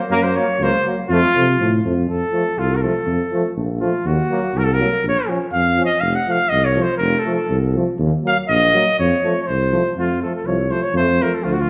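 This Balkan folk piece for brass band moves at 122 BPM in 2/4, with a light swing on the sixteenths that gives it a restless, virtuosic drive in F phrygian dominant. The vintage-toned trumpet carries the melody up front and takes a solo from 2.1 to 10.0 seconds, while the harmony moves from Gb to F and then through Ebm and Bbm before settling back on F. Beneath it, a brilliant trombone sits distant in the background, and a warm euphonium with light vibrato holds a narrow line. The mellow, roomy tuba anchors the bass, also with light vibrato. The band sounds as if heard from further back on a scoring stage with moderate reverb, and this short cut from a longer piece runs just under 12 seconds.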